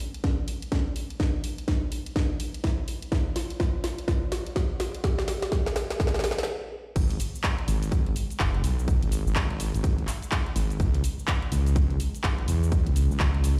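A swung sixteenth-note groove in four drives this bouncy, gritty bass house excerpt, cut from a longer piece. The opening build-up is a drum fill from a house drum kit of crash cymbal, handclaps, hi-hat, shaker and a cracking snare, set over an electronic kick drum with a punchy, overdriven edge. Both drum parts sound layered, produced and up front, as if re-recorded in a large room. At 6.5 seconds the music halts for a brief stop, and at 7.0 seconds the drop lands as a heavy wobble bass enters low in the register. It blends sawtooth and sine tones with a fast attack and sustained notes, saturated and compressed, while chorus lends its wobbling body a mellow sheen and sidechain pumping makes it breathe. The whole track carries a light reverb and sounds played on a big sound system in a bare room, with a large studio reverb around it.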